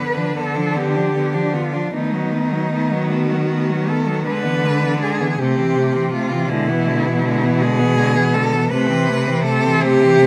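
A warm, expressive cello sings the melody up front with vibrato and portamento in this solemn, elegiac classical fragment for cello ensemble in A minor, moving with rubato and uneven beats at 53 BPM in 6/8, while a rich, intense second cello carries a smooth-topped inner line in the background, a focused, close third cello bows the accompaniment and a rich, intense fourth cello plays a bass line up front, the whole ensemble set in a moderate recital hall reverb as the harmony moves through diminished and dominant chords to rest on A minor over C.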